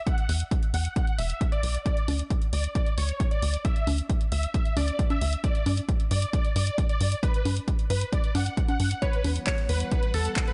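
A digitally spacious, rolled-off mix carries this bittersweet, emotional uplifting trance excerpt in E dorian at 134 BPM, where a tape-warm electronic kick drum sits up front beside a punchy analog drum machine of congas, handclaps and hi-hat, and a driving sawtooth sequencer bass pumps under the beat. Huge, detuned supersaw chords carry the melody through analog chorus, a low-pass filter, dub echo and sidechain pumping, moving from E5 through Dsus2 and Gmaj7. At 9.0 s the harmony lands on Emadd9 as a crystalline, warbling wavetable pluck with chorus and digital delay joins in, and a dark, intimate string section bows sustained chords in the background.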